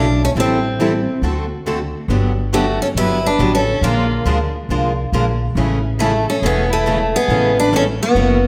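A swung 4/4 pulse at 139 BPM drives this charming, lively excerpt of acoustic string swing in A major, with a growly, woody pizzicato upright bass sitting up front beneath two picked acoustic guitars playing accompaniment: one boxy parlour guitar and one plugged-in concert guitar set in the background. Alongside them, a bright, fresh-stringed lead guitar carries the melody with audible finger squeak, and at 2.5 seconds a focused, bowed violin with vibrato enters on a second line. The chords move from Am7 through D7 and Gmaj9 to Bb7 before settling on Amaj9, heard within a recital-hall reverb.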